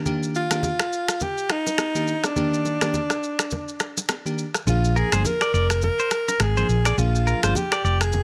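A crystalline FM electric piano opens this sunny, romantic afrobeats excerpt at 104 BPM, its chorused Ebmaj7 chords joined almost at once by an up-front electronic shaker, finger snaps and rim click, close and dry congas and bongos, and a breathy alto saxophone melody with vibrato and tape echo. At 4.7 seconds the harmony moves to Bb7 as a round, punchy hollow-body electric bass enters, followed at 5.0 seconds by a bright, twangy, direct-recorded clean guitar riff. The swung sixteenth-note groove sits in a dry, gritty recording with little reverb.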